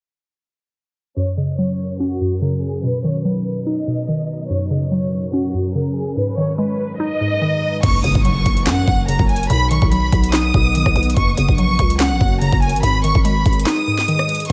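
This hip hop and trap excerpt pairs a wistful, intimate opening with a triumphant half-time groove. From 1.2 seconds a chamber violin section carries the melody with soft-attack, sul tasto bowing and vibrato, touched by tape echo. Beneath it, a woody, round FM pluck with a chorus effect plays the accompaniment, and from 1.7 seconds an ethereal, airy pad built from detuned sawtooth and triangle tones sustains the chords through ensemble chorus and its own reverb, all under a filter sweep. At 7.8 seconds a very quiet electronic impact marks the arrival of a growling, buzzy 808-style bass and a trap kit with a knocking kick, sharp snare, metallic hats, rim clicks, handclaps and crash. The chords cycle between F#, B and G#m, and a brief break at 13.7 seconds closes the passage, all set in light digital ambience.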